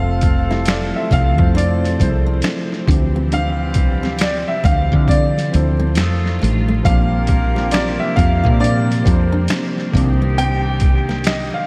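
R&B and neo-soul in a smooth, soulful vein, this short excerpt moves at a slow 68 BPM in 4/4 with a swung sixteenth-note feel, centred on F major and drifting through Fmaj7, Dm11, F13, Bb69 and Cm9. A concert grand piano carries the melody in an intimate, natural voice with audible action noise and long sustain, coloured by a lush chorus, while a worn, slightly out-of-tune tine electric piano supplies accompaniment heard through its built-in speakers. Up front, a dark, round fretless electric bass with analog chorus anchors the low end beside a gritty, pitched-down boom bap sampler-style kit of thumpy kick, medium-tuned snare, hi-hat and finger snaps. Farther back, a very quiet string section holds smooth, bowed chords with vibrato, a horn section adds stabs doubled in octaves and treated with tape echo, and a fingerpicked nylon-string guitar plays a soft second line from 0.2 seconds, finger squeak and all. 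The whole mix is dreamy and soaked in a lush hall reverb, with vinyl crackle lending a dusty, nostalgic haze.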